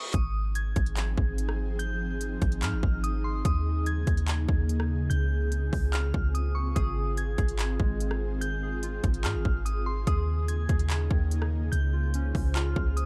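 A clean, deep 808-style bass sits up front in this dreamy, floating stretch of atmospheric cloud-rap, its boomy sine tone striking fast and decaying under a half-time trap kit of hard-clipped kick, crisp hi-hats, handclaps and rim clicks with a tape-warm edge. Above them, a glassy synth bell carries the melody with a crystalline FM shimmer, coloured by chorus, a low-pass filter and tape echo. An ethereal pad of detuned sawtooth and triangle voices holds mellow sustained chords from 0.9 seconds, its slow attack and long release bathed in ensemble chorus and its own reverb while sidechain pumping makes it breathe. At 6.8 seconds, warbly lo-fi synth keys join with nostalgic square-wave arpeggios, filtered and echoed and sitting quietest in the mix. The harmony cycles through Ab6, Eb7sus4 and Dbmaj7 in a dark production with little room sound, cut from a longer piece.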